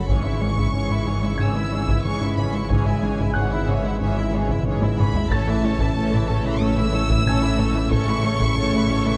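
Tense and relentless, this cinematic hybrid orchestral and electronic film score excerpt sets a dark, woody violin melody over a lush second violin line and a portamento-laden viola in the background, with distant, roomy French horns and tight, punchy trombones holding sustained chords, a soft round pluck arpeggiating, a rubbery, hollow square bass riff, a thick, saturated detuned saw bass with chorus, very quiet cellos and double basses anchoring the low end, a muted felt upright piano adding texture through tape echo, and heavy-stick taiko drums that break into a fill at 4.7 seconds before the harmony shifts from C#m/G# to A.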